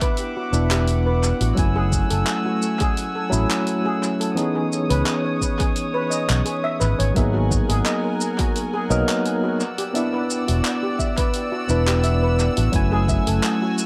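Lightly swung sixteenths at 86 BPM in 4/4 carry this smooth, wistful sunset chillout clip, where a deep, tape-toned electronic kick and a delayed deep house kit of handclaps, hi-hat and shaker, both re-recorded in a small room, sit beneath a warm, amped fretless bass up front from 0.5 s, a clean, up-front tine electric piano and shimmering steel pan arpeggios trailed by analog delay, and soft, floating sul tasto strings holding chords that move from E7sus2 through F#m9, C#m9, G#m9 and Em9, with moderate spring reverb giving the echo-heavy mix its sheen.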